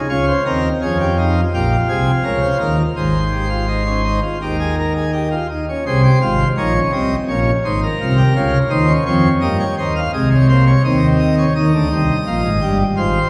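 A pipe organ on a full plenum leads this baroque-style three-part fugue in Ab major, its brilliant mixtures sitting up front and spanning G1 to F5. At 84 BPM in a straight 4/4, the mood is driving yet contemplative, with the harmony circling through Db, Eb and Ab and a new section beginning at 5.8 seconds. A wet concert hall reverb places the listener further back in the room, and this short passage, tuned to A4 = 439 Hz, is cut from a longer piece.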